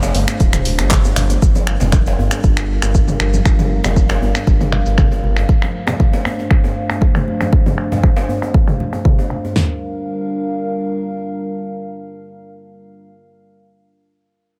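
A deep kick and fat snare from an up-front, tape-warm deep house kit drive this hypnotic, spiritual afro house excerpt at 118 BPM in G minor, entering just after a second kit of low-pass-filtered finger snaps, handclaps, hi-hat, shaker and toms, a distant djembe with metal rattles, background congas and a mellow sawtooth synth bass that stops at 5.4 s, while a dark, detuned analog pad with chorus, 12-bit sampler grit and sidechain pumping sustains a Gm7 chord alone after 9.7 s.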